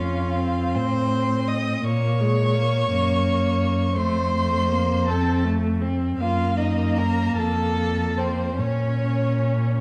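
The cello stands out most, its smooth, even bowed line sitting up front and anchoring the bass between F2 and Bb2. This is a slow, elegiac and solemn romantic movement for string quartet in Bb minor, flowing in 6/8 at around 47-57 BPM with a rubato feel. Above it, the first violin carries the melody from C5 up to Eb6 with a focused, slightly distant vibrato tone, while the second violin shapes a supporting line in a lower register. The viola fills in the accompaniment, its focused sound also set back in the space, and all four single players are bowed with vibrato throughout the roughly 9.8-second extract. The harmony moves between F and Bb minor, passing through an Ebmadd9 over Gb at 6.2 seconds before settling back on Bb minor at 8.6 seconds. A moderate recital hall reverb and a dark production give the ensemble a cushioned, sombre glow.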